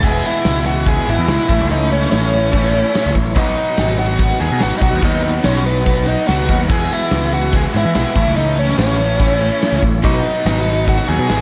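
Classic rock with a confident, driving feel, this short cut from a longer piece rides a straight 4/4 groove through a looping E, A and B chord progression. An octave-fuzz lead guitar carries the melody up front, its tone dark and distorted, while a double-tracked, overdriven electric guitar plays a bright picked riff underneath. A growling picked bass, direct and amped with its own overdrive, anchors the low end, and a gated 80s drum kit with a punchy kick, medium-tuned snare, hi-hat and crash cymbal sits forward in an airy, polished stone-room sound. Far back in the mix, a thick tonewheel organ holds sustained chords through a slow rotary speaker with vibrato, and a picked steel-string acoustic guitar adds a very quiet layer of accompaniment. Every part plays throughout the 11.4 seconds, all framed by light studio reverb.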